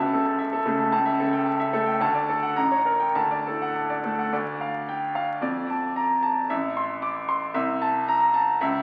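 Heroic and sparkling, this short cut from a longer classical virtuoso piano study features a solo baby grand piano, brilliant and open with long sustain and placed up front, spanning A1 to D6 in a rubato 2/4 at 99-116 BPM, moving from D major to D minor at 4.3 s, heard through a recital hall's wet reverb and the crackle of a very old 78 rpm record.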